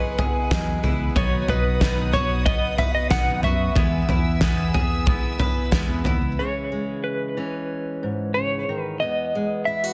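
In this nostalgic, hopeful indie folk excerpt, a loose, up-front drum kit lays down its fat snare, punchy kick and toms in a pumping studio room. Over it, a dark, clean electric guitar carries the melody, treated with tremolo and digital delay, and it plays on to the close at 9.9 seconds. Underneath, a full-bodied dreadnought acoustic guitar is picked in accompaniment, a round, double-strung mandolin spins delayed arpeggios, and a fingered electric bass sits punchy in the background. A dark string section adds sustained chords, bowed sul tasto with a soft attack and light vibrato for an intimate, close sound. At 6.4 seconds the arrangement shifts as a warm fingerpicked acoustic guitar, finger squeaks audible, moves up front to join the electric melody. Studio reverb surrounds the parts, and the master is dense and heavily limited.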